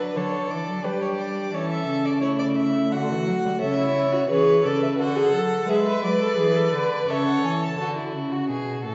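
A string quartet opens together in a serious, solemn baroque-style fugue in D major at 87 BPM in 3/4: a clear first violin carries the melody over a warm, expressive second violin with portamento, a smooth, even viola and a rich, soft-attacked cello that sits up front on the bass, all bowed with vibrato. The first violin drops out at 7.8 seconds, and the other three carry the passage to its close at 8.9 seconds. The quartet is heard from further back in a wet recital hall, with a dulled top end, in this short cut from a longer piece.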